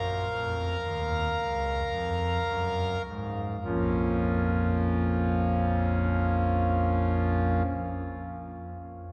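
Classical chorale-style music for solo pipe organ in Bb minor, solemn and dark, moves at a slow, rubato 50-60 BPM in 4/4, its thick, romantic foundation stops sounding up front across a range from Bb1 to Bb5 and slowing down through the first 3.7 seconds before a new section begins, while a cathedral reverb lingers for 5.8 seconds in this brief cut from a longer piece.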